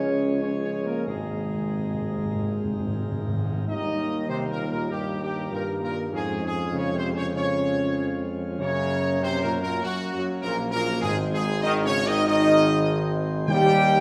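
A wet scoring-stage reverb wraps this regal, solemn classical brass-and-organ passage, cut from a longer piece, in a spacious glow. At 97 BPM in 4/4 and Ab major, a clear, roomy trumpet section carries the melody up front with light vibrato, while a mellow French horn section and a smooth-topped, tight trombone section hold sustained chords in the background. A pipe organ principal chorus adds full, romantically voiced harmony beneath them, and a distant, clear tuba anchors the bass. Timpani with soft mallets and round plastic heads enter with a fill from 1.1 to 3.7 seconds and return at 11.0 seconds to the close. The harmony moves through Db, Abadd9, Eb, Db/F, Gb and Ab before settling on Eb, lending the passage a stately, ceremonial weight.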